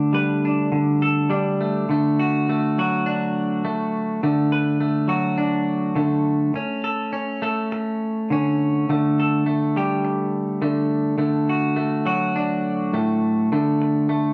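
Highlife in D major at 103 BPM, this joyful, sunny excerpt from a longer piece features a solo semi-hollow electric guitar, clean, picked and compressed with a hollow-body tone, sitting up front from 0.0 to 14.3 seconds across a range from A2 to B4. The chords move from Gsus2/D to D, Bm7/D and A before cycling back, with the short opening section giving way to the next at 1.9 seconds. The band plays live in one room, and a moderate stone room reverb with a 1.1-second decay surrounds the guitar.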